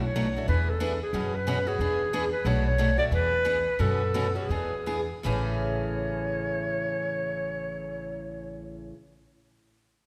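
This lively, charming excerpt of acoustic string swing in the jazz manouche style opens with all three parts together from the start: a breathy clarinet carrying the melody, a picked steel-string acoustic guitar in accompaniment, and an upright bass underneath. Set in A major at a swung 4/4 between 155 and 183 BPM, the music slows down from 2.5 to 5.3 seconds, as the harmony moves through E7, F#7sus4 and Bm9 before settling on Amaj7 at 5.3 seconds. The clarinet sits up front with a mellow, whispered subtone, soft attacks, scooped notes and vibrato, its close-miked sound lending the solo line an intimate jazz character. The guitar is bright and also up front, while the pizzicato bass on gut strings gives a woody, thumpy foundation. A moderate concert hall reverb of about 2.0 seconds surrounds the trio, as befits a recording made in a church or concert hall, and the passage ends at 9.0 seconds as a fragment cut from a longer piece.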